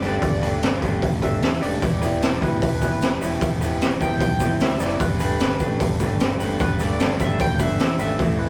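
A tearing, sawtooth-edged sync lead with chorus and vibrato takes a solo across this restless, moody indie rock fragment, moving from Em to Gadd9 over a dark, slightly broken-up riff from a guitar through a small old amp, a very quiet overdriven garage guitar, a punchy fuzz bass sitting in the background, and an up-front, gritty drum kit with a boomy kick and high-tuned snare, while a barely audible rotary tonewheel organ and a grainy egg shaker slip in at 1.8 seconds, all in a rough, tube-saturated rehearsal room.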